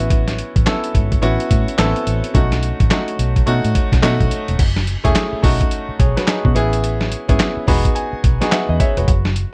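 New jack swing R&B with a confident, slick strut, this short excerpt rides a swung sixteenth-note groove. A boom bap sampler-style drum kit sits up front with a thumpy kick, a medium-tuned snare, handclaps, hi-hat and crash cymbal, its compressed, pitched-down sound carrying vintage 12-bit sampler grit and a tape-warm edge. Beneath it, a vintage muted fingered electric bass supplies a dark, round, foam-muted low end with an amped tone. A clear concert grand piano, natural and deep in its bass register, plays the accompaniment over a progression moving from A6 and B7 through F#m9 to Amaj7 and Emaj7. The piano adds fills at 3.7 and 7.4 seconds, closing out each of the two halves of the passage, all in a dry, close-sounding space.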